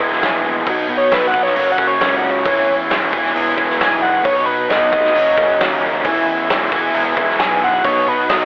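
Two overdriven electric guitars open this upbeat, wistful indie rock excerpt at 134 BPM in E lydian, one compressed and up front with chorus and delay, the other raw and lo-fi in the background, over a fuzzy fingered bass and a loose, saturated drum kit with a tight kick, before a screaming, guitar-like synth lead with ring modulation and vibrato takes the melody at 1.0 s and a buzzy, very quiet vintage combo organ adds sustained chords from 4.2 s, the whole mix carrying a telephone-like tone and light reverb.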